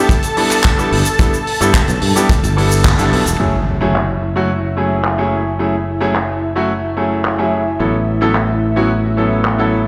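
Nu-disco at 109 BPM in F# phrygian, this short, cosmic and groovy excerpt opens on a brilliant, short-sustain grand piano and a thick, detuned sawtooth unison pad with chorus, both carrying 12-bit sampler grit and sidechain pumping, with dub echo on the piano. Beneath them sit a tight, up-front acoustic kick that drops out at 3.0 seconds and a small-room funk kit of handclaps, hi-hat and shaker, dulled by low-pass filtering. A growly, bright fingered electric bass with tube saturation enters at 0.9 seconds. After a band accent, a background electronic impact lands at 3.4 seconds as a filter sweep on the analog synth pad begins and the harmony moves from G6 to F#m9 and later A69. Everything sits in a lush hall reverb, heard as if played on a big sound system in a bare room.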